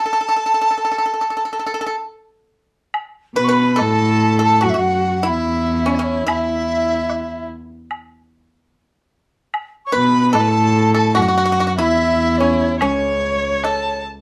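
Heard through a dark, moderately reverberant studio sound with lossy compression artefacts, this pastoral, graceful Chinese chamber piece at a rubato 72 BPM in A gong mode opens with a hollow, airy dizi melody carrying vibrato over a bright, fingerpicked pipa, then a close woodblock enters at 2.9 seconds before a clear, floating sul tasto cello up front and an earthy, biting erhu with portamento join at 3.4 seconds.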